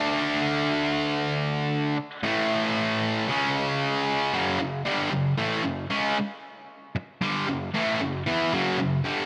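In straight 4/4, this heavy, aggressive rock fragment features a lone sludgy, overdriven electric guitar, picked and double-tracked up front, moving through D5, A5 and C#5 before settling on F# minor at 4.3 seconds, all set in a moderate plate reverb with bright 1980s-style digital production.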